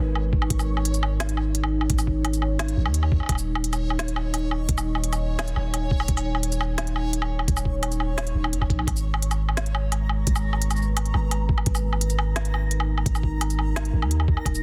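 A dense, heavily limited modern master with little reverb carries this tense, cinematic excerpt of half-time drum and bass at 172 BPM in G# minor, where a moody, detuned sawtooth pad with chorus, phaser and sidechain pumping holds sustained chords over a deep, mellow 808-style sine bass sitting up front, a reversed, granular texture swells dreamily and brightly in the background with its own reverb, and a produced electronic kit of woody snare, crisp hats, shaker and woodblock enters at 0.2 seconds, joined at 0.3 seconds by a gritty, pitched-down, thumpy kick.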